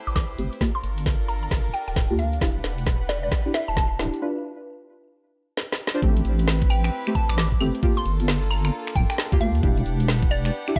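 A deep, soft wobble bass sits up front, its detuned square and sine tones dark and compressed under a gentle chorus, anchoring this late-night, moody two-step UK garage excerpt at 133 BPM in A minor with a swung sixteenth-note feel. A knocking electronic kick and a layered garage kit of woody snare, metallic hi-hats, claves, finger snaps and shaker drive the groove, both carrying the character of a small room. Over a cycle of Am7, Gm7, Em7 and Dm7 chords, a mellow, full-bodied chord stab of triangle and sawtooth tones decays through chorus and digital delay, with a filter sweep running through the build-up to 6.0 seconds. A hollow, bouncy square pluck carries the melody in two phrases, pausing after 3.9 seconds and returning at 6.7 seconds for the drop. Throughout, a reedy chamber violin section with gut-string tone and light vibrato holds sustained chords, roughened by vintage 12-bit sampler grit and pumping with sidechain, while a digital ambience surrounds the mix.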